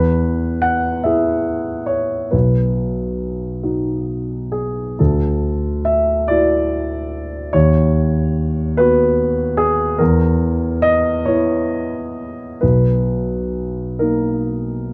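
A slow, rubato lilt in 6/8 carries this tender, hopeful fragment of neoclassical minimalist piano, cut from a longer piece. A solo grand piano, dark and mellow and placed up front, plays throughout the 14.9 seconds across a span from B1 to F#5, moving through chords such as E, Dadd9 and B/D# before settling on Bmaj7 at 12.6 seconds. Close, detailed miking and light reverb keep the sound intimate.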